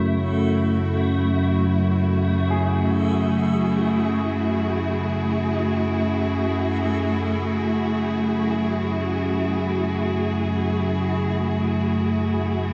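Unsettling and cavernous, this dark ambient drone in F# minor drifts in free time over an F#madd9 chord, held up front by a resonant, evolving analog drone with chorus and a close, expressive bowed cello section sustaining chords with vibrato. A reversed, granular texture swells dreamily in the background until 7.4 seconds, while a clear concert grand piano enters at 2.5 seconds with arpeggios set in the background and carried on tape echo. Huge, wet reverb and a cassette tape sound surround this excerpt.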